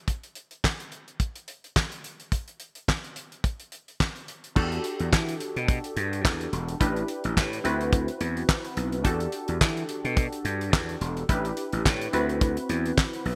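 Early-eighties boogie funk with a danceable, funky mood and a swung sixteenth-note feel, cut from a longer piece: a damped 70s drum kit opens alone, its dry, mid-forward sound up front with a fat snare, tight kick, hi-hat, handclaps and crash cymbal. At 4.6 seconds a gritty slap bass enters, overdriven, growly and punchy, alongside a funky polysynth comp whose detuned sawtooth and square-wave tones carry ring modulation, a fast-attack filter pluck and a mellow chorus sheen, cycling through Em11, A9sus4 and D13. The production is bright and 1980s-style digital, with light reverb.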